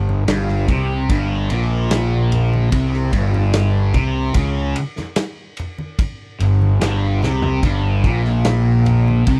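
A straight 4/4 pulse at a slow 73 BPM carries this hazy, kaleidoscopic psychedelic rock excerpt, where a thick, bright, double-tracked fuzz guitar riff with phaser sits up front on a rootless Fsus4 over a round, overdriven fingered bass, joined by a vintage drum kit with punchy kick, dark cymbals and a pumping small-room sound that enters at 0.3 seconds and plays a fill at 7.2 seconds, plus very quiet, saturated, low-tuned congas, all in a dry-sounding space.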